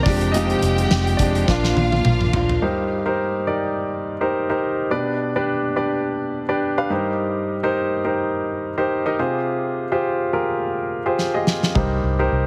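Piano-driven pop in C minor at 105 BPM with a gentle 16th-note swing, bittersweet and driving, this excerpt opens with a polished baby grand piano solo over a distant bowed violin section with delay, a dark fingerpicked jumbo acoustic guitar riff, a round foam-muted fingered electric bass and a loose indie kit with a fat snare and punchy kick, whose fill leads at 2.6 seconds into a long stretch where the clear piano carries on, the drums returning for another fill at 11.2 seconds and the bass rejoining at 11.8 seconds, in a lightly reverberant, heavily compressed radio-like mix.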